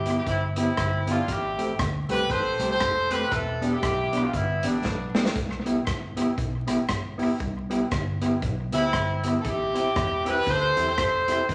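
A clear, punchy horn section carries the melody from the opening over a dark, round, foam-muted fingered electric bass in this cheerful, upbeat ska excerpt at 118 BPM, with a swung 4/4 feel in C major tuned to A4 = 437 Hz, while a mellow, clean electric guitar accompanies and a swinging big-band drum kit of kick, medium-tuned snare, rim click and hi-hat, treated with analog delay, plays a fill at 4.8 seconds; the horns drop out at 5.2 seconds and return at 8.7 seconds over Cmaj7, Am7 and Em7 chords, and the mix sits in a wet large-studio reverb with vinyl crackle.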